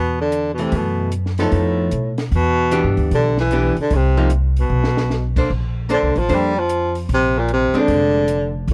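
A swung 4/4 pulse sets a relaxed, easygoing small-group jazz feel in this short cut from a longer piece, with the upright bass and mellow baritone saxophone starting together at the top. The baritone carries the melody in its low register with vibrato and a soft subtone, sounding distant and roomy even as it sits up front. The pizzicato upright bass gives a woody, growly foundation, and a compact cocktail kit enters at 0.3 seconds with a dark, smooth tone, high-tuned snare, punchy kick, hi-hat and crash, adding a brief fill at 4.7 seconds. A clean, hollow-bodied archtop guitar, picked and amplified, joins at 0.6 seconds to provide accompaniment over chords moving from F#madd11 through Em7 and Cm7 to Bbmaj9 and Bb9. The sound is a dry, close 1970s-style studio recording in a small room, intimate and unhurried.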